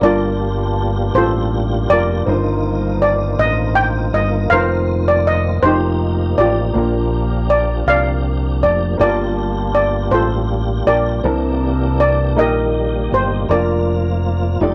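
Light reverb and a small-room ambience frame this short, reverent and hopeful slow gospel passage in a straight 6/8, where an up-front, shimmering double-seconds steel pan played with medium rubber sticks carries the melody with a slapback echo. Beneath it, a dark grand piano adds mellow, boxy accompaniment with long sustain, while a tonewheel organ holds full, lightly overdriven chords through chorus vibrato and a slow rotary speaker. A round, punchy fingered electric bass with transformer saturation sits up front, anchoring a lush progression that moves from Gm9 through suspended F chords and C13 to settle on Bb/F.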